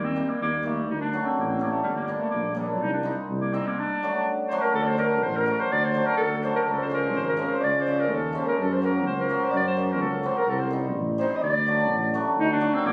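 A clear, forceful clarinet with light vibrato carries the melody over a dark, smooth-topped tuba bass from the start, joined at 0.2 seconds by a shimmering, hammered cimbalom, in this bittersweet, soulful klezmer excerpt at 126 BPM in 2/4 and D phrygian dominant, where a soft, breathy flute-like synth lead with chorus adds a sustained second line from 4.5 seconds, the clarinet set in plate reverb and the performance captured on a phone in a small room.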